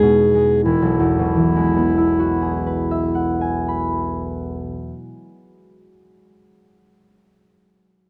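A clear clarinet carries a pastoral, luminous melody in classical style, singing between E4 and G#4 until 4.4 seconds over a concert harp whose thumb-plucked, ringing tones sit up front and span from E1 to B5. This short excerpt from a longer impressionist duo moves in a rubato 6/8 at 29-34 BPM in E major, with Emaj7 giving way to Eadd9 at 0.7 seconds. The harp rings on alone until 5.7 seconds, captured by close, detailed microphones in light reverb.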